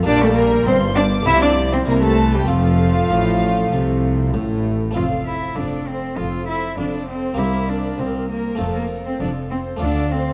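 A solo cello with a rich, focused voice and a smooth top sits up front, carrying the melody from 0.1 s in this festive, lively baroque-style concerto movement, cut from a longer piece. Above it, a symphonic violin section sings a lush, expressive high line with vibrato and a soft attack, while a chamber violin section supplies a focused second line beneath. A close-miked harpsichord, dry and round with an Italian-style pluck, fills out the accompaniment alongside a distant, even viola section in the background. The low end rests on bowed chamber cellos, whose playing shows touches of portamento, and a double bass section with a gentle, soft-attacked tone. The passage moves into a new section at 5.0 s, with the harmony settling on F and closing toward D minor, all framed by a dark production and a moderate stage reverb.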